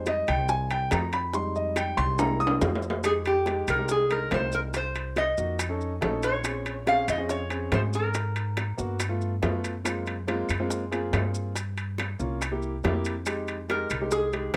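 A nasal, metallic resonator slide guitar played with fingerpicks takes the melody at 3.1 seconds and returns at 13.7 seconds in this fiery, sultry Afro-Cuban jazz excerpt in F minor at 141 BPM, backed by an intimate grand piano with audible action noise and plate reverb, a dark, thumpy gut-string upright bass played pizzicato, round low-tuned bongos, ringing saturated timbales, grainy maracas and distant woody claves, heard through a rough home-demo mix.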